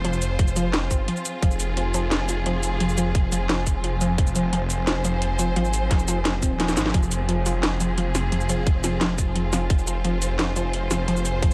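A dark, aggressive drum and bass excerpt in F minor at 174 BPM opens with rich bowed strings holding sustained chords, a warbling lo-fi pluck spinning chorused, delayed arpeggios, a swirling, saturated detuned saw bass up front, cracking snare and metallic hats, and a moody ambient pad deep in the background, all but the drum kit pumping under sidechain, before a tight electronic kick lands at 0.4 seconds and a brief drum fill breaks through at 6.6 seconds in a dry, close-sounding mix.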